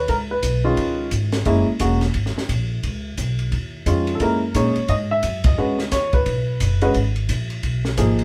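A relaxed, swinging jazz piano trio passage opens with an up-front baby grand carrying the melody over woody, thumpy pizzicato upright bass, and a compact cocktail drum kit joins at 0.1 s on hi-hat, ride, snare and kick. The kit sounds dark and smooth, with a high-tuned snare and punchy kick under a rolled-off top, while the band plays live together in a room with moderate reverb, moving between ninth chords. A shared band accent lands at 5.4 s before the harmony turns to a suspended chord, keeping the feel warm and easygoing throughout.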